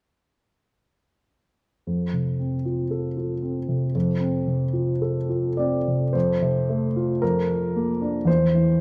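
Hopeful and passionate, this short fragment of a romantic classical character piece for solo piano moves at a slow 56 BPM in 2/4 with free, uneven rubato in F major. An intimate, up-front baby grand enters at 1.9 seconds with long sustain and audible action noise, moving from F to Bb/F at 7.2 seconds and C/E at 8.3 seconds, all bathed in a lush recital-hall reverb and a dark production.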